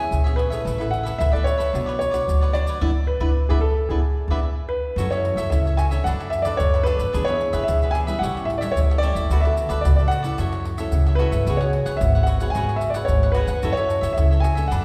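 A straight 4/4 groove at 111 BPM drives this festive, joyful cut from a longer samba and choro piece, built on a tight surdo, tube shaker, pandeiro and tamborim played with soft hands and captured close and dry. Underneath, a dark, woody upright bass with gut strings gives a thumpy pizzicato foundation, while a crisp, picked cavaquinho and a thumb-plucked classical nylon-string guitar fill out the accompaniment. Up front, a natural-sounding baby grand piano carries the melody with a warm tone. The harmony moves through E6, Asus2 and Bmadd9 to E7, where the whole band hits an accent from 2.8 s until the music settles into F# minor at 5.0 s. From there the chords run through F#m7, Bm9/F#, E7, A7, D6 and C#7sus4 before returning to F#m7, all set in the wet reverb of a scoring stage, like a church or concert hall.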